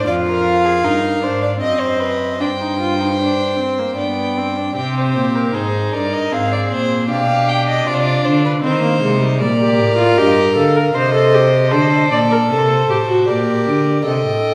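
Elegant and lively, this baroque-style fugue for string quartet moves at 77 BPM in a straight 3/4, set in C minor and cut from a longer piece. Two violins carry the upper lines, the first taking the melody with a light vibrato and the second playing a close, full-bodied counter-line, while the viola fills in the accompaniment with a smooth top and the cello anchors the bass up front. All four players bow with period-style gut-string tone that gives the ensemble a reedy edge, and every part sounds throughout the roughly 14.5 seconds. The harmony passes through diminished and suspended colours before settling on G, then a second section beginning at 4.8 seconds works through C minor, F minor, G7 and D7 toward a close on G minor. A wet recital-hall reverb places the listener further back in the room, lending the quartet a spacious, resonant glow.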